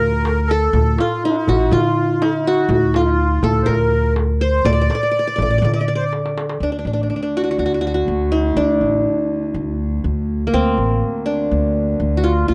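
A bright-edged, fingerpicked qanun carries the melody up front in this stately Arabic maqam ensemble piece, joined from the start by a reedy accordion second line with light tremolo tuning, a woody pizzicato upright bass and a soft-handed clay darbuka. The accordion stops at 6.1 seconds as the darbuka plays a fill, and the drum falls away at 6.6 seconds, when a dark, bowed cello with gut-string tone enters quietly on a sustained drone beneath the qanun and bass. The dry, close sound of a small 1970s-style studio gives this cut from a longer piece a warm presence.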